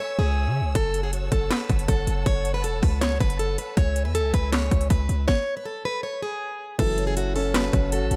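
Set in studio ambience, this eerie, menacing half-time trap excerpt opens with an up-front picked plugged-in steel-string acoustic guitar melody, finger squeak audible, over lush bowed symphonic strings, as a punchy sine 808-style bass enters almost at once and an overdriven trap kit with a hard-clipped kick, sharp snare, metallic hats, handclaps, rim clicks and crash follows at 0.8 seconds, then after a stop at 5.3 seconds a mellow, vintage grand piano and a distant, roomy brass stab arrive at 6.8 seconds.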